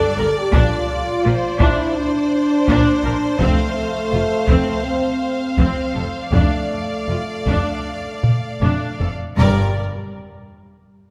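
Set in the deep, wet wash of a concert hall, this dark, relentless cinematic orchestral cue in G minor moves at around 78-84 BPM in a straight 4/4, cut from a longer piece. Up front, a mellow French horn section holds sustained chords while a distant, focused violin section carries the melody over a close, clear second violin line and lush, vibrato-rich violas. Cellos and double basses join in the background at 0.2 seconds, and a close taiko ensemble struck with hard sticks enters at 0.5 seconds, driving a drum fill from 8.2 to 9.4 seconds that leads into the harmony's return to G minor.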